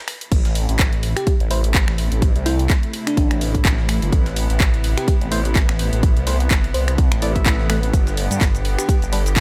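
Bass house at 126 BPM in A minor, bouncy and gritty, cut from a longer piece: layered house drums with cabasa, crash, finger snaps, handclaps and warm hats and a very quiet breakbeat kit of ride and high-tuned snare start at 0.1 s. A punchy, up-front electronic kick then enters at 0.3 s with a thick, swirling phased detuned saw bass under a filter sweep and distant bowed strings holding sidechain-pumped chords. They are followed by a sparkling bell-like FM electric piano melody with tremolo set in the background from 1.2 s and hollow percussive organ stabs with chorus, phaser and dub echo from 1.5 s, all over Am moving to G at 7.9 s in a digital ambience.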